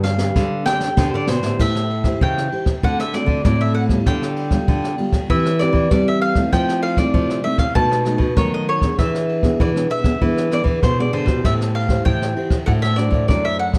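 A brushed drum fill on a roomy kit with dark cymbals, a high-tuned snare and a boomy kick launches this yearning, nostalgic samba-and-choro excerpt at 97 BPM in A minor, while from the very start a mellow, woody mandolin picks the melody on double strings over an up-front fingerpicked nylon-string guitar with audible finger squeak and a thumb-plucked nylon-string bass line on fresh strings, all moving through an Am7, D7, Fmaj7, B7, E7 progression with light reverb and a dark, warm production.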